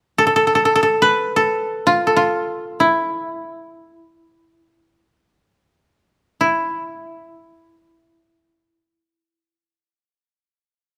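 Calm and austere, this fragment of Japanese traditional chamber music unfolds in free time, tuned slightly high with A4 at 441 Hz. A solo koto, played with fingerpicks, carries everything, its notes staying within a narrow span from E4 to B4. The instrument sounds dry and woody, placed up front. The playing slows between 2.1 and 6.4 seconds, easing into a second section that begins as that slowing ends. A light reverb gives the room a faint sense of space, and the koto falls silent at 9.5 seconds.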